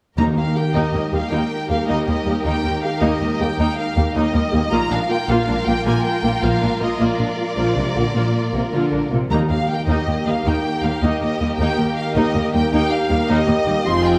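A triumphant, soaring cinematic fragment in Eb major opens at 0.2 seconds with a hard-mallet timpani stroke, articulate in a live room, as the full string body and harp arrive together. The violins carry the melody high with lush, expressive vibrato, a soft attack and a smooth top, while a second violin line sits in the background beneath them. Focused, close violas supply the accompaniment, and a rich cello section joins a smooth, distant double bass section to anchor the low end. A very quiet, thumb-plucked concert harp rolls arpeggios throughout, and from 0.6 seconds a French horn section holds sustained chords with light vibrato in a classical style. Moving at 105 BPM in a straight 12/8, the harmony travels from Eb to Bb and back to Eb, where the timpani strikes again at 9.3 seconds, all bathed in a wet scoring-stage reverb.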